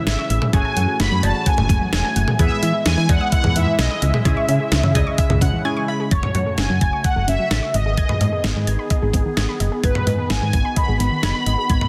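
A mellow synth brass lead opens the excerpt at once, carrying a cool, melancholic synth-pop melody at 129 BPM, its brassy, detuned tone thickened by chorus, phaser and digital delay and touched with vibrato. Beneath it, a swirling phased pad holds sustained chords, while warm analog keys with a ring-modulated edge and filter sweep accompany until 6.1 seconds, adding a keys fill from 4.7 seconds before a brief break. A soft, round pluck sits in the background with chorused, delayed arpeggios, and a dark, up-front FM bass gives the low end a solid, fast-attack weight. A clean 12-bit drum machine drives the straight 4/4 groove with a thumpy kick, medium-tuned snare, hi-hat, toms and cowbell, sounding tape-warm and re-recorded in a small room. The harmony moves from C#m through F#madd9 and Emaj7 before shifting to F#m and G#m in the second half, all within a light reverb and a dense, heavily limited modern master.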